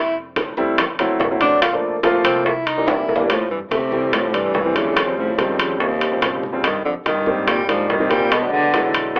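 A straight 4/4 groove at 144 BPM drives this sunny, sophisticated Afro-Cuban jazz excerpt, with ringing metal-shell timbales, tight high-tuned bongos and distant low-tuned congas alongside a woody, growly pizzicato upright bass in the background, while a breathy, whispered tenor saxophone solos up front over an intimate grand piano with audible action noise until a drum fill at 2.9 s ushers in a bowed cello, expressive with vibrato, portamento and tape echo, carrying the melody from 3.3 s, the whole mix heard through a moderate club reverb and a telephone-like sound.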